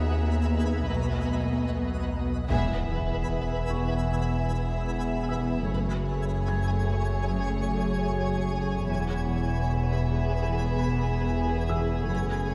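Mysterious and eerie, this cinematic suspense cue moves at 75 BPM in a straight 4/4, cut from a longer piece. Distant violins carry a floating sul tasto melody over dark, intimate violas, while rich cellos and a smooth-topped double bass section sit in the background beside a deep, saturated sub bass drone with a pitch-drop attack. A twinkling granular texture holds sparkling sustained chords with an octave-up shimmer and its own reverb, and a felt-muted upright piano adds mellow texture with audible action noise. A very quiet violin texture opens the cue before a close violin second line and a ringing, fingerpicked concert harp riff enter at 2.5 s, together with a band accent and a huge, dark impact lasting to 5.7 s. The harmony shifts from E over Eb through B7 and E to F#madd9 before returning to E, all framed by a moderate concert hall reverb in a dark production.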